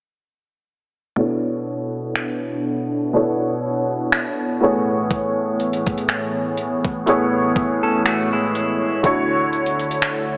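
Heard through a small-speaker sound and a lush hall reverb, this late-night, moody contemporary R&B fragment opens at 1.2 seconds with a soft, intimate felt-muted upright piano, its action noise audible, over a smooth, warbling analog pad of detuned sawtooth tones with lush chorus, while a filter sweep runs across the passage. A gated 80s drum machine enters at 2.2 seconds, up front and overdriven, with a thumpy kick, hi-hat and finger snaps re-recorded in a small room. Across the passage the harmony moves from Bm11 to Amaj7 and then Dmaj7, and at 7.8 seconds a clean, twangy electric guitar adds brief arpeggios through phaser and digital delay.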